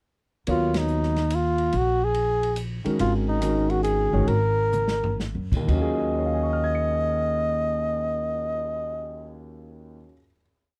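A dry, close studio sound with a 1970s character and little reverb frames this brief, complete modal jazz piece in Eb minor, intense yet cool in mood, swinging in 3/4 at a tempo between 120 and 143 BPM. A trumpet with a bucket mute carries the melody up front, its veiled, forceful tone shaded with vibrato as it states motif-based sentence phrases. A vintage grand piano supplies smooth, syncopated comping in quartal voicings, while a woody pizzicato upright bass plays in two. An open jazz drum kit with dark cymbals and a boomy kick sits further back, with sticks on the ride. After a band accent at 0.7 seconds, the music moves from Ebm11 to Ab9sus4 and slows from 3.0 seconds, with a drum fill just before the group settles on a final Ebm11 chord at 5.7 seconds, the piano ringing on until 10.4 seconds.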